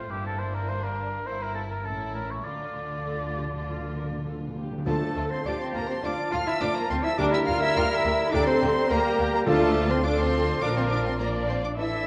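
Urgent and dramatic, this quick classical-period symphony movement in D minor at 104 BPM sets an intimate, sul tasto violin melody over a background violin line, a punchy oboe, smooth distant violas, and expressive cellos and dark double basses with portamento, while hard-mallet timpani play a fill from 2.4 seconds and a hollow flute, background clarinet, mellow bassoon and very quiet dark horns join at 4.9 seconds, all in a reverberant recital hall with the warble and faint hum of worn old cassette tape.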